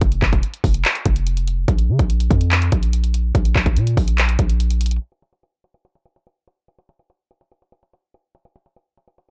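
This trap-flavored hip hop fragment, cut from a longer piece, sits at 144 BPM in a half-time feel, landing somewhere between melancholic and hard-hitting. An electronic trap kit runs throughout, with a hard-clipped kick, bright hi-hats and handclaps sitting up front, re-recorded in a small room. Alongside it for the first 5.0 seconds, a deep, boomy 808-style bass with a sine core and a noise layer strikes with a fast attack and then decays into a mellow tail, reaching from F1 up to Db3. Once the bass stops at 5.0 seconds, the drums carry on alone while a filter sweep moves through the final stretch to 9.3 seconds. The mix is dry, with little reverb and a low-pass filter rounding off the top end.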